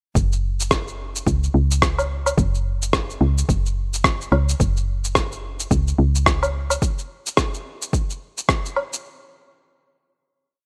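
From 0.2 seconds, a woody, round FM bass plays a dub-style line with sidechain pumping beside a deep, overdriven electronic kick and a gritty, compressed layer of shaker, rim click and woodblock, all up front in a hypnotic, mystical organic downtempo groove at 108 BPM with swung 16ths; the bass drops out at 6.8 seconds and the kick at 8.6, while the percussion carries on alone to 9.0 seconds in a fairly dry mix.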